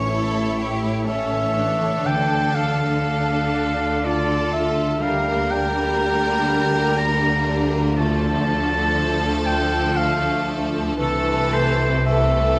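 Classical slow romantic movement for symphony orchestra in a yearning, solemn 3/4 with a rubato feel, heard as a 12.6-second cut from a longer piece. A focused, bowed violin section carries the melody while a clear, roomy oboe sits up front with a second line, joined by a distant second violin section, a lush viola section in accompaniment, and a mellow, ringing harp playing very quiet arpeggios. Underneath, a dark, close double bass section and an intense cello section in the background hold the bass, all set in a recital hall reverb.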